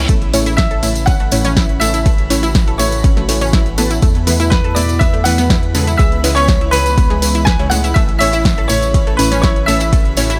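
A dry, close-sounding mix carries this uplifting, expansive progressive house excerpt at 122 BPM in A major, moving through A, Esus4 and C#m7, where an up-front, overdriven electronic kick anchors a deep house kit of hi-hat, ride cymbal and punchy snare, while a jingly tambourine sits in the background and a round analog bass with tube saturation and sidechain pumping rounds out the low end. A very quiet, airy unison pad holds sustained chords beneath gritty, 12-bit sampler-textured unison pluck stabs and detuned sawtooth arpeggios with chorus and tape echo, the stabs and arpeggios both breathing with sidechain pumping, as a twinkling granular shimmer glints high in the background. From 0.6 seconds a clear, polished baby grand piano carries the melody with tape echo, joined by a crystalline, nasal wavetable pluck tracing a second line above it.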